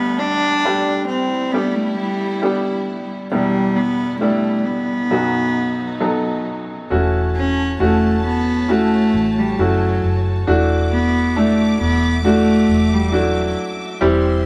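A reedy, gut-toned solo cello carries the longing melody up close in this emotional pop excerpt at 68 BPM, set against a brilliant baby grand piano and a lush, distant string section holding sustained vibrato chords. At 6.9 seconds a dark, foam-muted electric bass enters with a round, punchy presence as the harmony moves from G, Em7 and B toward A6/E and Dadd9/E. The players sound as if they share one room with moderate studio reverb.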